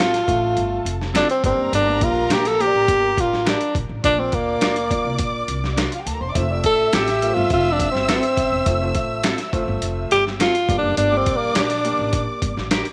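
Joyful and warm, this uptempo 1960s-style soul cut at 104 BPM puts a breathy, mellow tenor saxophone solo up front over a lush bowed violin section, twangy chorused electric guitar stabs in the background, a woody pizzicato upright bass, an intimate upright piano with audible action noise entering at 0.3 seconds, very quiet finger snaps from 1.1 seconds, and a gritty, overdriven sampler-style drum kit with a thumpy kick, all set in light studio reverb as the chords move from F through Gm to Bb.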